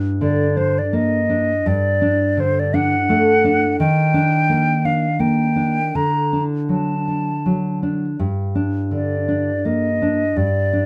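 A dark, full-bodied nylon-string guitar opens this excerpt from a longer romantic duo, its thumb-plucked accompaniment sitting in a deep classical register. A moment later, at 0.2 seconds, a concert flute enters with the melody, its pure, hollow tone shaped by vibrato and tongued notes in a high, singing range. The mood is solemn and melancholic, moving at a rubato 83 BPM in 3/4 time in G minor. The harmony travels from G minor through D over G, E-flat major seventh and D before returning to G minor, giving the passage a gentle sense of longing and return. Both instruments sound up front and intimate, captured by close, detailed microphones with only a light touch of reverb around them.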